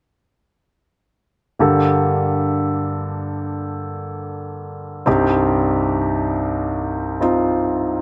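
A clear, intimate grand piano enters at 1.6 seconds and sits up front with audible action noise and light reverb, playing a heartbroken, emotional pop accompaniment in a slow straight four that moves from Gmadd9 to Cm at 5.1 seconds before this short fragment of a longer piece breaks off at 8.0 seconds.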